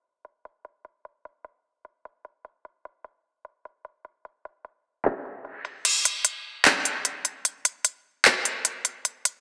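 A filter sweep opens this brooding, melancholic half-time hip hop clip, and at 0.2 seconds an up-front electronic trap drum kit enters with crisp hi-hats, handclaps and crash cymbal, all bathed in a lush hall reverb within a dense, heavily limited, low-passed master, until the kick is muted from 5.8 seconds to the close.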